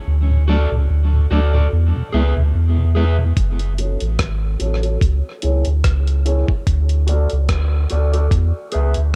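Dub reggae with a spacious, deep mood, this excerpt opens on a break where a round sine sub bass sits up front while a soft, flute-like tonewheel organ, with chorus vibrato, key click, a stopped rotary speaker and tape echo, hovers in the background until 3.3 seconds. At 3.4 seconds a dusty, compressed sampler-style kit arrives up front with a thumpy kick, hi-hat and rim click, swung lightly on the sixteenths. From half a second in, a dark, slightly broken-up picked electric guitar drifts through low-pass filtering and tape echo, taking on a filter sweep from 3.4 seconds, and the whole mix is steeped in echo-heavy digital ambience.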